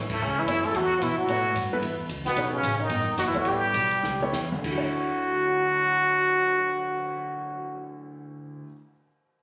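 Small-group swing and bop jazz in a playful mood, cut from a longer piece and captured on a phone in a roomy studio, with a bright, up-front plunger-muted trumpet carrying the wah-wah melody over a background trombone line full of vibrato and scooped notes, a woody pizzicato upright bass, a deep-toned concert grand piano, and a dry cocktail kit with dark cymbals, a high-tuned snare and punchy kick, as the tempo slows from 2.4 to 4.6 seconds and a drum fill leads into the next section.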